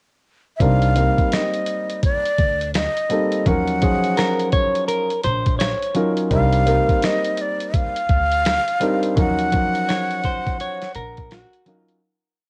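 A laid-back, swung boom bap beat at 84 BPM in 4/4 drives this smoky, mellow jazz-hop piece, where from 0.6 seconds a gritty, pitched-down sampler kit with a thumpy kick and sixteenth-note hats joins a woody, syncopated pizzicato upright bass, a dark concert grand pushing rootless Cm9 and Ebm9 chords, and a breathy, vibrato-laced flute spinning motif-based call phrases, before a clean, fingered electric guitar enters at 4.2 seconds with answering phrases in the melody's rests, all carrying the warm character of a small-room home cassette recording as the whole piece fades out from 9.2 seconds.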